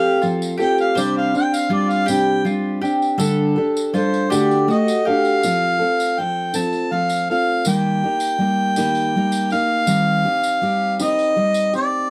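Acoustic folk in a slow 6/8 at 54 BPM, wistful and intimate, with a mellow, roomy harmonica carrying the melody up front over a bright, full-bodied picked steel-string guitar, woody double-strung mandolin arpeggios that drop out at 5.4 seconds, and a jingly, vintage tambourine, all in a dark production with moderate studio reverb and chords moving from F through Csus2 and Dsus4 to Eb and Cm/Eb.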